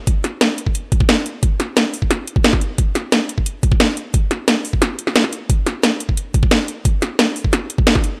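Dark and aggressive, this short drum and bass cut charges along at 177 BPM in a straight 4/4 feel. An electronic kick drum, knocking and overdriven, sits up front and thumps from 0.1 s until 8.0 s, briefly dropping out between 4.8 and 5.5 s before it returns. Alongside it, a layered drum kit of hi-hat and snare carries the groove, with a cracking snare and metallic hats given a tape-warm character. Both drum parts were re-recorded in a small room, which keeps them close and up front, and a light reverb hangs around the whole mix. The result is a dark rhythm bed taken from a longer piece.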